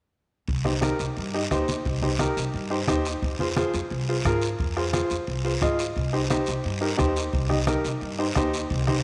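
From 0.5 seconds, a dark, thumpy pizzicato upright bass with gut strings sets a passionate, danceable cumbia groove at 175 BPM in 4/4. A soft-beater bombo and low-tuned congas sit in the background, with a raspy, dry guiro close by. At 0.6 seconds a clear, intimate upright piano enters up front, its woody tone and audible action noise carrying the accompaniment over a C minor to F minor and back to C minor progression, all set in a wet echo-chamber reverb and tuned slightly flat to A4 = 438 Hz in this brief cut from a longer piece.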